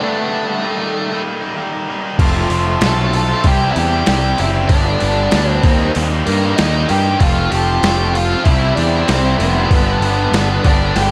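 A dark, fuzzy octave lead guitar with digital delay carries the melody over a bright, overdriven rhythm guitar riff in the background from the opening of this confident, driving classic rock fragment in G mixolydian at 96 BPM, before a tight distorted guitar with slapback echo, a round, up-front fuzz bass and a gritty, pitched-down, sampler-style drum kit with a thumpy kick and medium-tuned snare join at 2.2 seconds, cycling through G, Eb, F and C in a big arena sound with concert hall reverb until a drum fill at 11.0 seconds.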